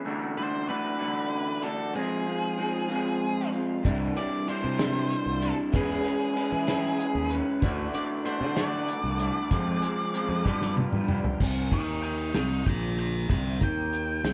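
A hypnotic, kaleidoscopic psychedelic rock excerpt in a slow 6/8 at 63 BPM opens on a twangy, lo-fi guitar riff through a small old amp with phaser, over soft, flute-like tonewheel organ chords turning through a slow rotary speaker in the background, while a dark octave-fuzz lead guitar melody comes in at 0.4 seconds. Cloth-damped, thuddy drums with a rolled-off top and a growly, punchy fingered bass with overdrive join at about 3.8 seconds, moving through chords such as Dadd9, Fm and Cadd9 in a wet, large studio reverb as the band plays live in one room. After a drum fill, the organ stops at 11.4 seconds and the lead guitar takes a solo over a C5 chord until the cut.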